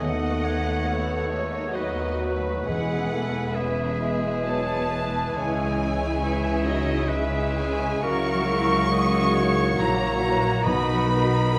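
A classical passage, warm and serene, moving in a slow three with an uneven, rubato pulse. A lush studio violin section carries the melody with expressive vibrato, while a symphonic violin section, a distant flute group, a clear oboe and a very quiet clarinet weave second lines around it. Beneath them, a punchy bassoon and a very quiet, soft-attacked viola section with portamento fill the accompaniment, a mellow French horn section holds soft chords, and a ringing fingerpicked concert harp spills arpeggios in the background. The bass rests on a smooth, distant cello section and a rich double bass section. Timpani enter softly from 2.7 to 4.0 seconds and again at 10.7 seconds, and the whole ensemble sits in a reverberant hall that lends the sound a gentle glow.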